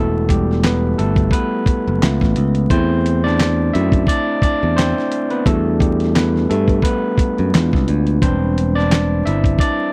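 R&B with a neo-soul lean, this sultry, soulful excerpt swings gently in 4/4 while an overdriven tine electric piano, pushed through a combo amp for a barky, gritty bite, takes the spotlight as a solo over lush, jazzy chords. A bright, growly picked electric bass sits up front beside a compressed, sampler-style drum kit, which enters at 0.3 seconds with a thumpy kick, fat snare, hi-hat and handclaps. The dry, close 1970s-style studio sound is dusted with vinyl crackle.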